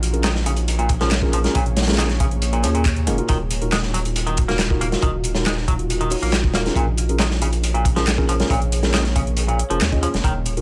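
Gritty and swaggering, this short breakbeat cut rides a straight 4/4 groove built on a crunchy, saturated acoustic break whose tight kick and medium-tuned snare sit up front with a rolled-off top. A second, electronic garage kit layers overdriven handclaps and metallic hi-hats underneath. A thick, saturated sine sub bass holds the low end firmly up front, while a clean, bright semi-hollow electric guitar plays a picked, compressed riff through tape echo. Mellow tine electric piano stabs, also carried on tape echo, punctuate the moody Bbm7 to Ebmadd9 harmony. Behind it all, a dark, detuned sawtooth pad with a sub octave sustains chords in the background, its chorus and built-in reverb pulled by sidechain pumping, and the whole recording carries light reverb and some lossy compression artefacts.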